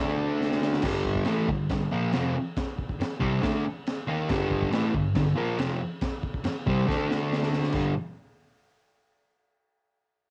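This home cassette recording has a moderate studio ambience and a raw, saturated, tape-worn character. It is a short, swaggering garage rock passage in straight 4/4, cut from a longer piece. A picked fuzz guitar, double-tracked and compressed and sitting up front, opens the passage alone on a D5 before settling into a riff over G minor. A crunchy breakbeat drum kit enters at 0.4 seconds with a fill, bringing a punchy kick, a high-tuned snare and crash cymbal, all with a dark, gritty tone and a rolled-off top. Another drum fill arrives at 6.9 seconds as the guitar returns to D5, and the passage lands on a G5 at 7.8 seconds.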